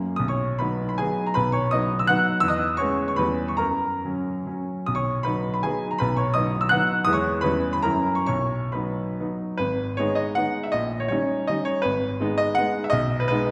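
A clear baby grand piano opens this short romantic classical piece, a proud and graceful dance in 3/4 with dotted rhythms. The piano plays solo from 0.0 to 13.5 seconds, spanning G#1 to F#6 with a natural, short-sustained tone. The tempo moves freely with rubato between 126 and 184 BPM. In B major, the harmony circles through C#m7/E, C#m7b5/E and F#7 back to B. At 9.6 seconds the music turns to G# minor, moving between G#m and D#7/A# before settling on G#m/B. A wet scoring-stage reverb places the piano further back in a roomy space, and the passage is cut from a longer piece.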